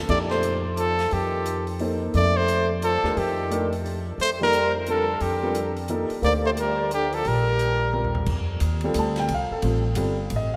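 Modal jazz at 176 BPM in a swung 3/4, hypnotic and spiritual, cut from a longer piece and set in a vast, echoing cathedral-like space. A clear, close-miked trumpet carries the melody with light vibrato over a cup-muted trombone's veiled, breathy second line in the background, while a woody pizzicato upright bass sits up front and an intimate baby grand piano, its action noise audible, comps through chords from F9 to Gmadd9/F. A polished, airy big-band kit with a punchy kick swings underneath, and during its fill from 7.9 seconds the horns drop out, leaving bass, piano and drums on a Gsus2, with the drums stopping at 10.4 seconds and bass and piano carrying on until 10.6 seconds.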